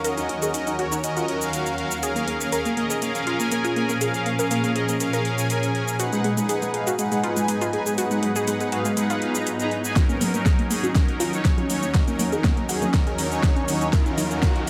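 This progressive house excerpt opens with a shimmering, ethereal pad holding sustained chords in Eb minor, joined from the start by a round, warbling analog pluck tracing arpeggios through a filter sweep, soft detuned supersaw stabs sitting up front with phaser and dub echo, and a deep house kit of cabasa, metallic hats and a fat snare. At 121 BPM in a straight 4/4, the synths breathe with sidechain pumping while the pluck carries chorus, vintage 12-bit grit and echo, and the pad drifts on octave-up granular shimmer and its own reverb. The chords move from Ebm7 to Bbm7 and Abm7, giving an expansive, dreamy feel inside a lush hall. A very quiet swell and riser enters at 9.2 s, and at 10.0 s a build-up begins as a tape-warm, deep electronic kick arrives up front, with a drum fill and a filter sweep on the pad as the harmony returns to Ebm7. Overdriven congas, re-recorded in a large room, slip in behind at 10.1 s, adding grit in the background as the passage climbs.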